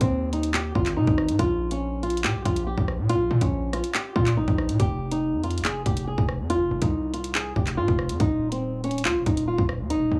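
Set in a small room with light reverb, this short cut from a longer drill track sounds cold and menacing, moving at 141 BPM in a half-time 4/4 feel in F minor. A thumb-plucked acoustic flamenco guitar carries the melody up front, dulled by a low-pass filter and trailed by tape echo, over a punchy, saturated 808-style bass whose heavy sine tone carries a noise layer and a fast attack. The electronic drill kit sits up front with a hard-clipped kick, bright hi-hats, handclaps and rim clicks, all with a tape-tinged glow, and the drums drop out at 10.0 seconds while the guitar and bass ring on to 10.2.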